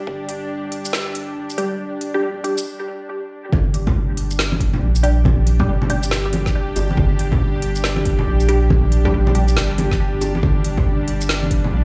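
A swung, half-time groove in 4/4 drives this brooding, meditative slice of deep dubstep, cut from a longer piece. A tense, string-like drone with vibrato holds sustained chords from the opening while a round, soft sub bass and a deep, layered electronic kick settle underneath, joined by a deep house kit of woody snare, smooth hats and shaker. A filter sweep carries the build-up, a muted, detuned chord stab with phaser and dub echo enters at 1.6 seconds, and a short break gives way to the drop at 3.5 seconds. Vintage, band-limited congas and bongos arrive with that drop, also trailing dub echo. The whole track sounds as if played on a big sound system in a bare room, with large studio reverb and a dark top end.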